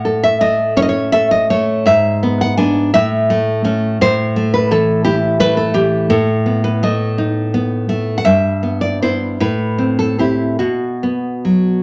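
Wistful and intimate, this brief romantic excerpt for solo classical guitar drifts in a rubato 6/8 at about 47-58 BPM, its full-bodied, fingerpicked nylon-string guitar sitting up front with audible finger squeak and a deep classical tone in a moderate, large studio reverb as the harmony moves from A through E7/G# and B7/A to Em/G, Am9 and a closing B5.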